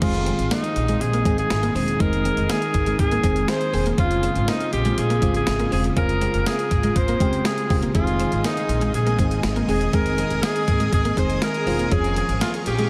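A clean, thumpy 12-bit drum machine drives a straight 4/4 at 121 BPM, with kick, medium-tuned snare, hi-hat, tambourine and crash, under a woody, dark pizzicato upright bass in this dramatic, moody 1980s-style pop piece, cut from a longer work, moving between Ab and Dbmaj7. Up front, a breathy, bright alto saxophone with light vibrato and tape echo carries the melody over glassy, bell-like FM electric piano with chorus and a very quiet, clean, picked twelve-string electric guitar riff. At 8.0 seconds a shimmering string machine enters in the background with sustained violin chords, and the whole dreamy mix is soaked in a huge ambient reverb.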